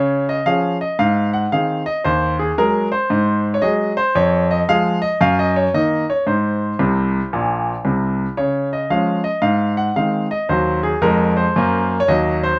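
Swinging and exuberant, this short stride piano cut from a longer piece moves at 114 BPM in 4/4 with a 65% swing on the eighths, its harmony circling around Db, Ab and Fm7. A bright concert grand plays alone throughout, up front and brilliant, its deep bass reaching down to Bb1 while the upper register climbs to Gb5, with a fill at 6.8 seconds. A moderate studio reverb gives the piano a touch of room.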